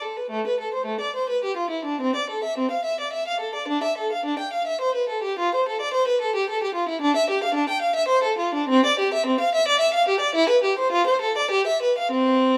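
Radiant and serene, this short excerpt from a baroque-style suite movement for unaccompanied violin unfolds in 3/4 at roughly 93 to 113 BPM, with a flexible, rubato feel that lets the phrases breathe. A single bowed violin carries everything from start to finish, ranging from A3 up to G5 with a rich, focused tone and vibrato. The music begins in A minor and brightens into C major from 7.0 seconds, lending the line a sense of opening light. Captured with close, detailed microphones, the instrument sits up front, yet light reverb gives it a faintly distant glow. The fragment is cut from a longer piece, ending at 12.6 seconds.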